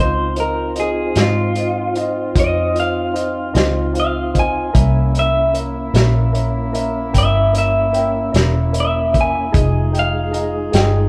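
A slow blues rolls along in 12/8 at 50 dotted-quarter beats per minute, with the vintage drum kit entering at 0.4 seconds on hi-hat, a tight kick and a muffled, medium-tuned snare that sits up front with a rolled-off top. The muted, fingered electric bass sits just as close, dark and round, anchoring a smoky, mournful progression that moves from Dbmaj7 to C7b9 at 4.7 seconds and on to Fm7 at 9.5 seconds. Over this, the electric guitar through a small old amp carries a clean solo melody, its compressed, slightly broken-up tone bathed in spring reverb and placed prominently in front. A woody upright piano with long sustain adds accompaniment in a similar register, while the mellow tonewheel organ holds chords through a slow rotary speaker with chorus vibrato. Further back, a horn section sustains warm chords, distant and roomy, all of it captured as a band playing live in one room in what is cut from a longer piece.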